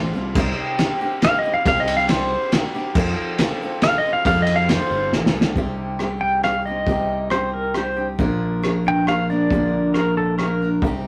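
Picked steel-string acoustic guitar and a punchy electric bass open this wistful, reflective folk and heartland rock waltz, joined by a cloth-damped, thuddy drum kit with a fat snare and dark, muffled cymbals, before a bright, twangy pedal steel guitar enters up front at 1.2 seconds with fingerpicked slide lines and volume swells, soloing until a drum fill at 5.1 seconds leads into the next section over moody minor-leaning chords, all captured as a rough, tube-saturated rehearsal-room take in a small room.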